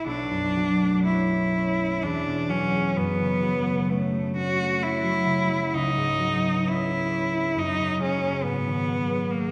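Wistful and hazy, this impressionist classical duo for cello and harp drifts in a rubato 3/4 at roughly 59-70 BPM, its extended chords such as Bm11, E13 and C#m11 lending a soft, unresolved color. Up front, a single bowed cello carries the melody in a rich, focused voice with vibrato, while the concert harp supports it with thumb-plucked, ringing accompaniment that reaches down into the low register. Both play throughout the 9.5 seconds, bathed in the long bloom of a concert hall with a 2.2 s reverb tail, in a short section cut from a longer piece.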